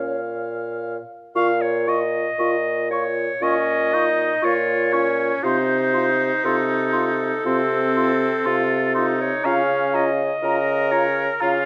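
At a slow, rubato 60 BPM in 4/4, this solemn, melancholic excerpt of a romantic classical movement for wind quintet unfolds in Bb minor, moving from Bbm through F7/C to Bbm/Db. A hollow concert flute with vibrato and a soft attack carries the melody from the background, while a warm, up-front oboe sings a second line and a present clarinet and a clear French horn fill out the accompaniment. Beneath them, a mellow, distant bassoon with light vibrato holds the bass, and the ensemble sits in a moderate recital hall reverb.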